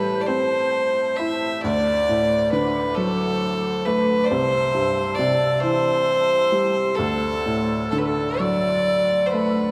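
A bright, nasal bowed fiddle with an earthy edge carries the melody up front from the first moment of this nostalgic, wistful Celtic slow air in a rubato 6/8, over a soft, mellow and intimate felt-muted upright piano, while a large flute ensemble holds pure, vibrato-tinged chords with crisp attacks far in the background, the sound set inside a wet church reverb as the harmony moves from Am7 through D7 and C6 to Dadd9 in this brief passage cut from a longer piece.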